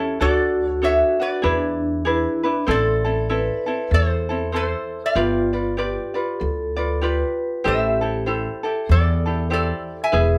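Sunny and relaxed, this excerpt from a longer Hawaiian piece moves at 97 BPM in 4/4 with a lilting swing on the eighth notes, in A minor. A bright, nasal metal-body resonator slide guitar carries the melody with fingerpicks, while a band-limited, vintage-sounding vibraphone with medium hard mallets and medium motor vibrato rings out a second line. Beneath them, a light, fingerpicked ukulele sits close up front and a woody pizzicato upright bass on steel strings joins at 0.2 s, all sharing one room with a wet studio reverb as the chords move from Dmaj7 and E7 into Am, G7 and Am7.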